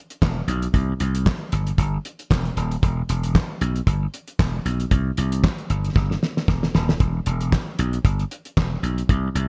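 Danceable and smooth, this short cut from a longer early-eighties boogie funk piece moves at 115 BPM in 4/4 with a light swing on the sixteenths. A damped 70s acoustic drum kit sits up front, dry and dark, with a fat snare, a tight kick, hi-hat and handclaps, its top end rolled off. A slap bass enters at 0.2 seconds, electric and bright, growly and punchy, with a direct, amped tone that ranges from Eb1 to C2. The drums break into a fill between 6.0 and 7.0 seconds before both parts carry on to the close at 9.5 seconds. A light reverb gives the pair a touch of space while keeping them close and present.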